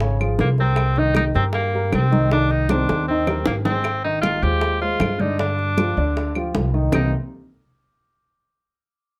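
A clear tenor saxophone with light vibrato and scooped notes leads up front in this sultry, fiery Afro-Cuban jazz fragment, entering at 0.4 s over a pizzicato upright bass, a mellow upright piano with long sustain, tight high-tuned bongos, bright damped congas and woody claves in the background, with a drum fill from 2.7 s and a moderate club reverb on a dark production.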